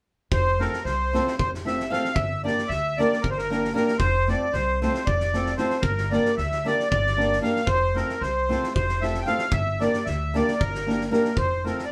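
A live-in-one-room sound with a short, wet studio reverb frames this wild, festive Balkan wedding-band excerpt in 7/8, where a reedy, sweet accordion with light tremolo tuning carries the melody up front over a fingerpicked flamenco guitar, a woody pizzicato upright bass on steel strings, and a distant, roomy drum kit with a fat snare and tight kick, all rocking between F and G minor.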